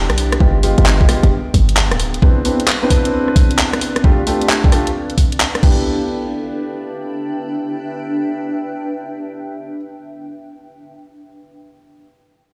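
Soulful and skippy, this two-step UK garage excerpt at 132 BPM in E phrygian swings its sixteenths as a ringing, very quiet concert harp note sounds until 0.6 seconds, a polished grand piano with long sustain and delay plays stabs over G7b9, Cmaj9, F69 and Em7, a punchy, tight 808-style bass hits up front until 2.2 seconds, and a layered electronic kick joins an overdriven, up-front garage kit of crash, handclaps, hi-hat and rim click until both stop at 5.7 seconds, all beneath a dark, blurred granular cloud pad that pumps and lingers through a large studio reverb heard as if played on a big sound system in a bare room.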